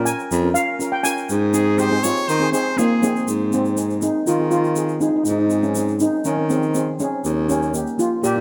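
A straight 4/4 calypso groove at 121 BPM in Ab major sets a sunny, festive mood in this clip cut from a longer piece. Two double-seconds steel pans played with soft rubber sticks carry it throughout. One takes the melody, up front with a shimmering, mellow tone in a boxy small room, while the other plays a quieter, close-miked and dry accompaniment. Beneath them a breathy baritone saxophone holds the bass line, dark and whispered, with vibrato and scooped notes, and a grainy egg shaker adds bright percussion. A brilliant, punchy trumpet plays a second line with vibrato from 1.5 to 3.3 seconds, where the music moves into a new section. The harmony moves from Bbm to Ab and closes on Eb7, with light reverb around the mix.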